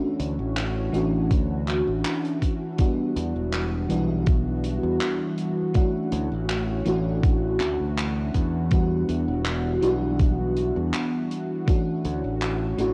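Woozy and melancholic, this short vaporwave excerpt drifts along in a straight 4/4, cut from a longer piece and steeped in the warmth of a cassette home recording with light, small-room reverb. Up front, an FM electric piano with a soft pad layer carries the accompaniment, its dreamy, detuned tone shaped by a fast attack and decaying notes, then smeared through phaser, analog chorus, tape echo and cassette wear. Behind it, a thick sawtooth unison pad holds mellow sustained chords with a slow attack and long release, sitting in the background under its own chorus. A bright, direct fingered electric bass enters at 0.2 seconds with a touch of tube saturation, alongside a studio drum kit whose handclaps and hi-hat sit mid-forward. From 1.3 to 11.8 seconds a thumpy, sampler-style electronic kick sits up front, tape-warm and re-recorded in a small room. The harmony simply sways between Dmaj9 and Em9, ending on Dmaj9 at 11.7 seconds.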